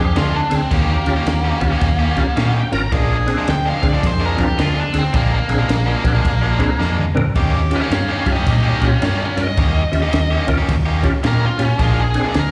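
Electric blues shuffle at 108 BPM in Bb mixolydian, laid-back and rollicking, cut from a longer piece, where a biting, overdriven lead guitar solos throughout over a reedy tonewheel organ with key click, slow rotary speaker and chorus vibrato (adding a fill from 2.1 to 2.9 seconds), a warm jazz-style horn section stabbing in the background, a round, foam-muted fingered bass sitting up front, a picked overdriven rhythm guitar riff with slapback echo, and a compact cocktail kit with a high-tuned snare and punchy kick that drops in a fill at 6.8 seconds, all heard as a live gig through the venue's PA in a small room with recital hall reverb, moving between Bb7 and Eb7.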